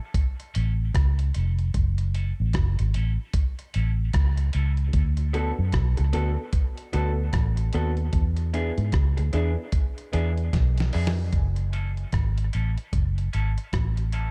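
A dark, woody upright piano opens this deep, heavy dub reggae excerpt with echoing stabs, joined almost at once by a gritty, thumpy sampler-style drum kit that sits up front with a large-room, tape-warm character, then a slightly broken-up, lo-fi electric guitar and a round, foam-muted bass that punches beneath at 75 BPM with a swung 16th feel in F# minor. The chords move from F#m7 through D6 to E7, where a filter sweep begins at 8.1 seconds and a drum fill leads into a new section at 11.3 seconds, after the slightly detuned piano has dropped out. The echo-heavy digital ambience gives the mix its depth.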